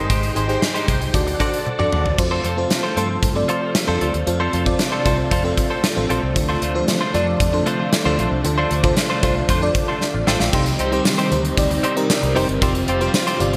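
A straight 4/4 pulse at 115 BPM drives this urgent, moody 1980s-style pop excerpt, with a punchy, gated drum kit up front from 0.1 s, its bright cymbals and tambourine ringing in a stone room and fills at 1.7 and 10.0 seconds, over a round, foam-muted fingered bass. A lush, dreamy FM electric piano with a soft pad layer carries the accompaniment while a compressed, direct-recorded clean guitar plays a picked riff through chorus and delay, and a swirling, warbling string machine sustains chords in the background. At 10.5 s a very quiet, double-tracked overdriven guitar joins as the harmony moves from Abmaj7, D, F and Dm7 to Cm and Fsus2, all within a bright digital mix bathed in a long plate reverb.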